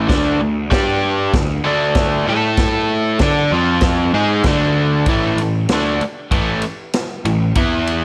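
Garage rock with a swaggering, menacing strut, this excerpt sets a bright, overdriven, double-tracked electric guitar riff up front over a growly, fuzz-laden picked bass and a vintage acoustic kit with punchy kick, medium-tuned snare, crash and ride cymbals, all ringing in a moderate stone room as power chords on D, G, F and A drive the riff until the passage shifts at 5.1 seconds.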